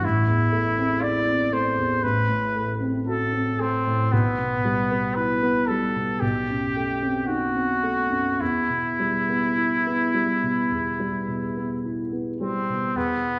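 Romantic classical duo in a solemn, melancholic mood, where a clear trumpet with light vibrato sings the melody over a dark, mellow baby grand piano whose notes ring with long sustain, both parts playing throughout. The slow, rubato pulse moves through a brooding progression that comes to rest on E minor around 8.4 seconds, in this short cut from a longer piece. A wet recital hall reverb gives the trumpet a roomy, distant glow while both instruments stay up front.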